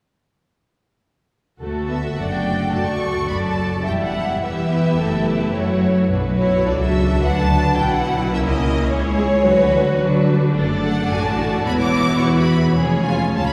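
A quick classical-period movement for string orchestra, this excerpt feels lively and graceful, cut from a longer piece and set in a reverberant concert hall heard from further back in the room. The lower violins, violas, cellos and double basses all enter at 1.6 seconds, with the leading violin section arriving just after at 1.9 seconds to carry the melody up front, its tone rich and focused with vibrato and a smooth top. Beneath it, a second violin line sounds even and smooth, while the violas supply a full-bodied, focused accompaniment. The cellos sit in the background with light vibrato, and the double basses add an expressive, distant foundation at the bottom of the texture. The harmony moves from D through a B minor passage and a diminished chord before closing on C#/E# as the music runs to 13.5 seconds.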